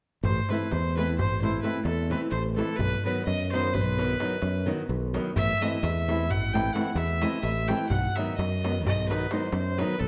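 In a straight 11/8 counted at 258 BPM in eighths, this bittersweet, virtuosic Balkan wedding-band folk excerpt in A dorian sharp 4 sets a clear, earthy bowed fiddle with light vibrato over an up-front, growly fingered electric bass with a bright edge, a crisp, deep metal-shell darbuka struck with hard hands, and fingerpicked acoustic flamenco guitar entering at 0.5 s, while the harmony alternates between Am and B inside a wet recital hall reverb and a dark overall production.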